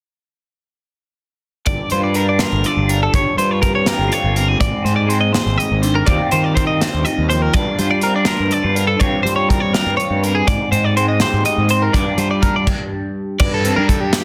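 A bright, twangy twelve-string electric guitar rings out up-front arpeggios over a lo-fi, slightly broken-up electric guitar phased through a small old amp, a punchy fuzz-overdriven picked bass and a studio drum kit with a pumping room sound in this restless, intricate math rock and midwest emo excerpt in 6/8, which moves through Gm7, Bbm69/G, Abmaj7 and Eb69 under light reverb and a dense, heavily limited master before a stop at 12.7 seconds.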